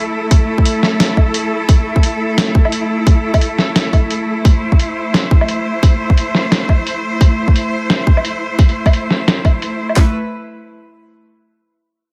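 This half-time drum and bass cut runs at 174 BPM in 4/4, with a 57% swing on the sixteenths giving the half-time groove a loose, heavy lurch in A minor. A trap drum kit sits loudest, with a hard-clipped kick, sharp snare and handclaps, all overdriven and pushed up front from 0.3 seconds onward. Alongside it, a boom bap sampler-style kit adds hi-hat, a medium-tuned snare and woodblock, compressed, pitched down and gritty with a tape-like grain, its hats, snare and percussion dulled by low-pass filtering. Over the beats, a bright cello section holds sustained bowed chords from A3 to C5, intense with vibrato and pulsing under sidechain pumping from the very start. The mood is tense and weighty, set in light reverb and a digital ambience, and the fragment is cut from a longer piece, shifting into a new section at 10.0 seconds just before it ends.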